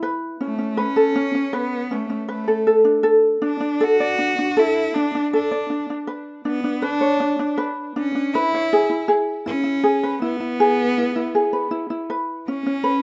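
A close, focused bowed cello carries the melody from 0.4 seconds, its clear tone shaded with vibrato and a touch of delay as it sits up front in the mix. This short acoustic pop excerpt has a carefree, sunny mood, moving at an easy 80 BPM in a straight 4/4 feel in A major, tuned slightly low to A4 = 439 Hz. Underneath, a mellow, thumb-plucked ukulele plays a light accompaniment from the very start, also placed up front. The harmony moves from Aadd9 through D/A, Bmadd9 and E before settling on a rootless Aadd9 at 12.1 seconds. Moderate studio reverb adds a little space around the rough home demo mix, which gives the performance an intimate, casual character.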